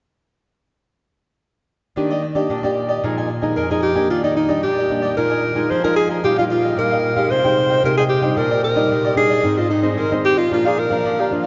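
Festive and playful, this samba excerpt at 112 BPM in Eb major pairs a crisp, picked cavaquinho with an up-front, thumb-plucked nylon-string guitar with audible finger squeak, both entering at 2.0 seconds, before a mellow, breathy alto saxophone with vibrato and subtone takes the close-miked jazz solo from 3.6 seconds, all bathed in a long cathedral reverb from a church or concert hall recording with a dark, rolled-off top end.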